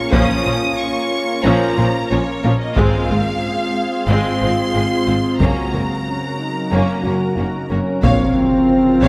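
A straight 4/4 pulse from hard-stick taiko drums in a live room drives this brooding, futuristic hybrid of orchestral film score and electronics, cut from a longer piece. A lush, focused violin section carries the melody over a soft-attack second violin line in the background, distant violas, smooth cellos and double basses. Alongside them a French horn section holds classical-style chords beside a pure, detuned organ-like pad with ensemble chorus and its own reverb, while a dark, very quiet baby grand piano adds vintage texture until 8.1 s. At 8.0 s a trombone section and a faint, punchy tuba arrive, joined shortly after by an electronic impact, all set in a reverberant scoring-stage space.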